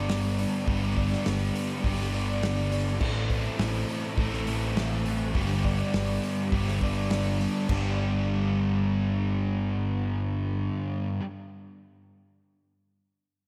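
A hazy, blissful shoegaze and dream pop excerpt at 102 BPM in G major opens at once with an up-front crunchy overdriven guitar riff touched by reverse reverb, a dark fuzz guitar riff thickened by lush chorus, an amped picked electric bass, and a woody, shimmering, octave-doubled twelve-string acoustic guitar playing arpeggios with subtle chorus and analog delay in the background. A loose indie drum kit with a tight kick, medium-tuned snare and rolled-off top plays from 0.1 to 7.8 seconds. The chords move from G to Am7 and back to G, and the bass drops out at 10.7 seconds. The dreamy mix is soaked in a wet hall reverb.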